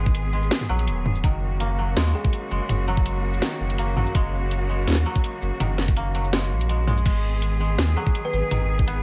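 Half-time drum and bass with a dark, cinematic mood, this brief cut from a longer piece sits in a drop throughout, moving from G# minor to F# and back. A bright, lush cello section holds sustained bowed chords with vibrato, roughened by vintage 12-bit sampler grit and pumping against the sidechain. Beneath it, a saturated sub bass with a deep, thick triangle tone and fast attack sits up front, alongside a knocking electronic kick and a layered kit of cracking snare, hi-hat, shaker, toms and crash cymbal, both carrying studio reverb. A mellow, woody koto plays fingerpicked arpeggios through the same sampler grit and a digital delay. A short, airy kalimba melody, thumb-plucked and sent through digital delay, appears only briefly at 2.1 seconds and again at 8.0 seconds, all set within a digital ambience.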